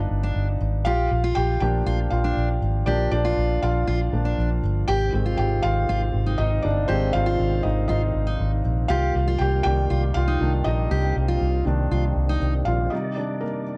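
This driving, dramatic piano-driven pop piece in C minor moves at 119 BPM in a straight 4/4, heard as a short cut from a longer work. A felt-muted upright piano leads up front with a mellow, intimate solo, its thin felt and audible action noise giving it a close, vintage character. Beneath it, a foam-muted fingered electric bass sits prominently with a round, amped tone. A fingerpicked steel-string dreadnought adds a full-bodied riff in the middle register, with audible finger squeak. At 4.9 s a reedy tonewheel organ enters in the background with sustained chords, carrying key click, chorus vibrato and a slow rotary speaker, while the harmony moves from G and Bb through Ab to Cm7 and settles on Cmadd9 at 12.9 s. The production is dark and warm with light reverb.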